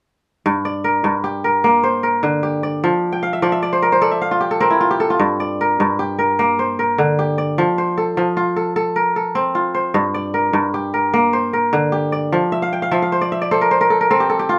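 A solo kora opens at 0.5 seconds, its mellow, ringing, crisp fingerpicked arpeggios sitting up front as they span from G2 to G5 over an alternating Gm and F progression in G dorian, with fills at 3.1 and 12.5 seconds, giving this hypnotic, reflective fragment of West African traditional music at 101 BPM in a straight 12/8 feel a live-in-the-room intimacy in moderate studio reverb.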